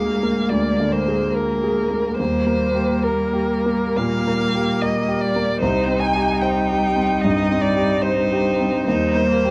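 The recording sounds like a worn old cassette, its pitch warbling and drifting, with a modest small-room reverb around the players. This tender, serene romantic movement for piano quartet unfolds in 4/4 with flexible rubato, heard as a 9.5-second fragment cut from a longer piece. The violin carries the melody up front with a rich, focused tone and vibrato, while the cello shapes a second line beneath it with soft attacks, expressive portamento and vibrato. The viola sits distant, smooth and even, adding bowed accompaniment with its own vibrato, and the grand piano is clear and intimate, present in the foreground with its action noise audible. The harmony moves from Bb7/D to Eb, then to Cm and back to Eb.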